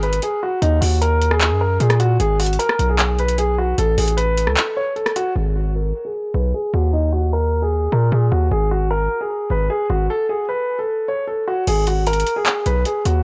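A distorted, heavy 808-style bass with a noise layer and fast, decaying attack dominates this menacing, melancholic trap clip in G# minor, moving at 152 BPM with a half-time feel. A low-passed concert grand piano with deep bass and long sustain carries the melody throughout and gets a filter sweep from 5.4 to 11.7 seconds, while a booming analog drum machine with metallic hats, handclaps, rim clicks and crash sits up front until 5.3 seconds, drops out through the middle section, and returns at 11.7 seconds. The dry mix is coated in worn, warbling cassette tape with drifting pitch.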